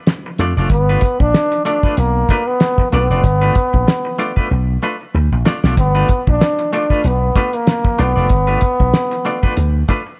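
Strutting and playful, this funk excerpt cut from a longer piece sets a clear, vintage trombone melody up front against a dry, cloth-damped drum kit with a fat snare and tight kick, and a punchy, amped slap bass run through an envelope filter. A bright, clean semi-hollow electric guitar adds compressed, picked accompaniment with tremolo over a rootless G9, lower in the mix, while light reverb surrounds the parts. The same section plays twice, joined by a drum fill from 4.5 to 5.8 seconds.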